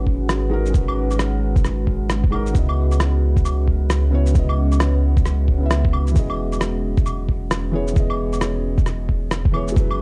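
A muffled, pitched-down electronic kick sits up front in this rainy, melancholic future garage fragment, its thumpy, overdriven sampler punch bathed in studio reverb. Compressed rim clicks, shaker and claves share that same crushed, lowered character and enter at 0.3 seconds, riding a swung sixteenth-note feel. A round, soft dub sub bass with a fast attack holds the low end up front with sidechain pumping, while a felt-muted upright piano plays mellow, intimate accompaniment, its audible action noise and vintage tone trailed by analog delay. Underneath, a deep, moody ambient pad of detuned sawtooth and sine layers with a sub octave fades in on a slow attack, carrying chorus, built-in reverb and 12-bit sampler grit. The harmony moves from G#m7 to C#m9 and on to Emaj7, and the whole piece sits in a dark, warm production with light digital ambience, cut from a longer track.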